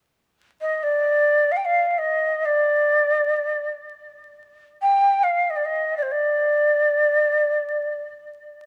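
Unfolding in free time, this brief Arabic fragment is cut from a longer piece and sits in D maqam kurd, tuned to A4 = 441 Hz. A lone ney carries the whole passage as a solo, entering at 0.6 s and sounding until 8.0 s, moving between C5 and G5. Its end-blown reed-cane tone is breathy and soulful, shaded with vibrato and marked by a crisp attack, and it sits up front in the mix with a touch of tape echo trailing behind it. The room adds a moderate studio reverb, while the dark, warm production and a layer of vinyl crackle lend the melancholic mood an aged, intimate patina.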